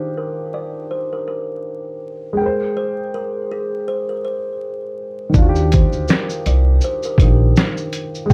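Swung at 81 BPM in 4/4, this dreamy, mellow lo-fi hip hop excerpt in Eb major opens with a hollow, ringing kalimba melody softened by a low-pass filter and analog delay, over a dark, slightly detuned upright piano with audible action noise and its own low-pass filter, moving from Ebmaj9 to Abmaj9; at 5.3 s a woody pizzicato upright bass and a muffled, pitched-down sampler-style drum kit (thumpy kick, snare, hi-hat and shaker with 12-bit grit) arrive up front, all under light reverb and vinyl crackle.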